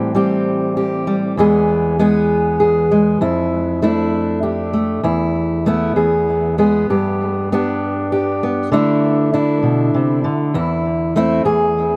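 Folk for solo fingerpicked steel-string acoustic guitar, intimate and haunting, moving in 6/8 with a rubato feel. The guitar plays alone for the full 12.0 seconds of this excerpt, cut from a longer piece, spanning from its low bass strings up into the middle register. Its tone is dark and sits up front, with finger squeaks audible on the strings and a tape echo trailing behind the notes in an auditorium-like space. The harmony drifts from Am7 through E, Dmadd9/F and a suspended Esus4 before resolving, then moves through G and Dsus2 to settle on Am/E and a final E. Light reverb adds a gentle halo around the guitar.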